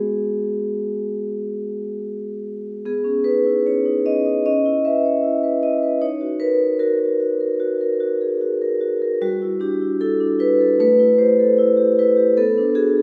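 A contemporary classical piece for solo vibraphone, this hypnotic, reflective excerpt moves in a loose, rubato 4/4 around 75 BPM in B major. The vibraphone, struck with medium hard mallets and played with the motor off, has a metallic, ringing tone across its range from G3 to E5. It opens on G#m7 before a shift at 2.8 seconds into Badd9, then moves through C#m7 and D#m before wandering into Gsus2, Am7 and Bm. The recording sounds as though heard from further back in a recital hall, with a lingering reverb.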